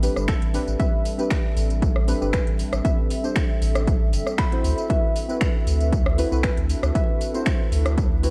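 A punchy, overdriven electronic kick sits up front from 0.3 s, its gritty 12-bit sampler texture shared by a house kit of finger snaps, metallic hi-hats, rim clicks and tambourine, both re-recorded in a large room, driving this late-night deep house cut at 117 BPM in A dorian. Beneath it, a round, nasal analog bass with tube saturation and a deep, mellow chord stab with chorus pump against the sidechain, moving from Am11 to D13 at 4.6 s. A hollow, flute-like pad and a warbly, nostalgic lo-fi tape-like pad with its own reverb drift in the background, while a soft, gentle pluck with chorus and analog delay carries the melody until 7.2 s, all under light digital ambience and vinyl crackle.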